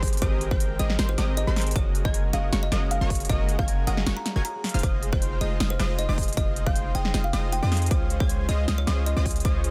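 Bright and lush, this future bass excerpt moves at 156 BPM in a half-time feel, cycling through Abmaj9, Gb69, Fm7 and Dbmaj9 chords. A woody, hollow-toned kalimba carries the melody over background concert harp arpeggios and a detuned, bright unison pluck, while a punchy sawtooth supersaw stab plays a riff and a deep, boomy 808-style bass sits up front, all of these parts pumping to the sidechain, with delay on the kalimba, harp and pluck. An overdriven electronic kick hits hard and stops at 9.5 s, alongside a big-room drum kit with a punchy snare and crisp hats, all inside a digital ambience and a dense, heavily limited modern master.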